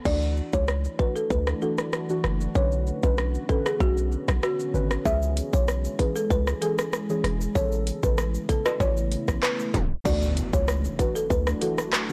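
Sultry and tough, this dancehall excerpt moves in a straight four-beat feel over a blown-out, overdriven sound with little reverb. A woody, rustic marimba carries the melody with a dry, band-limited tone and a digital delay, while a deep, mellow chord stab with chorus plays the accompaniment through Dadd9, Bmadd9, C#m and Aadd9. Beneath them, a dark ambient pad enters at 0.8 seconds, its slow-attack, full-bodied chords given chorus, built-in reverb and sidechain pumping. A punchy, heavy 808-style bass with a fast attack sits up front alongside an electronic island pop drum kit with a tight kick, metallic hats, handclaps, rim clicks, shaker and crash, its snare softly clipped. Egg shaker and timbales, compressed and saturated, join in the background at 5.1 seconds, and after a tape stop the final section opens at 10.1 seconds with a background impact as the chords return to Dadd9.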